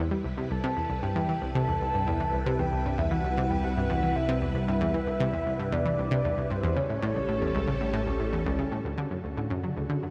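Expansive and luminous, this excerpt of sequencer-driven ambient space music in C lydian moves at 115 BPM in a straight 4/4, with an up-front, round sawtooth analog pluck riff repeating through chorus and delay over a mellow, warbling pulse-width analog drone bass and swirling, vintage phased string-machine chords. A soft octave-layered synth lead with a triangle-and-sine core, wave-folding and vibrato sings its melody from 0.5 to 8.3 s as the harmony shifts from C to A7 and settles on Dmaj7 at 8.9 s, all of it bathed in a huge ambient reverb.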